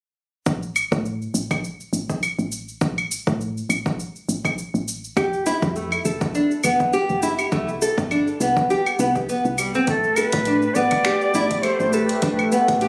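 A woody, round FM bass, an overdriven punchy electronic kick and a deep house kit of cabasa, claves, finger snaps and metallic hi-hats open this earthy, hypnotic organic downtempo excerpt at 0.5 s, moving at 102 BPM in A minor with a 16th-note swing and sidechain pumping on the bass. Fingerpicked nylon-string guitar arpeggios enter up front at 5.2 s, full-bodied and classical in tone with digital delay. At 9.9 s a bright, reedy cedar flute takes the melody with vibrato and a crisp chiff, over a smooth, warbling vintage analog pad with subtle chorus, all in light reverb with a phone-in-the-room character.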